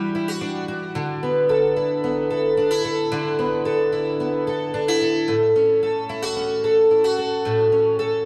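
Bathed in a wet recital-hall reverb, this hazy, melancholic dream pop excerpt at 111 BPM features a fingerpicked twelve-string acoustic guitar playing alone and up front, its bright, fresh-stringed, octave-doubled shimmer thickened by lush chorus and analog delay as it moves from Em9 to Dsus2 and settles on A6 at 5.3 seconds.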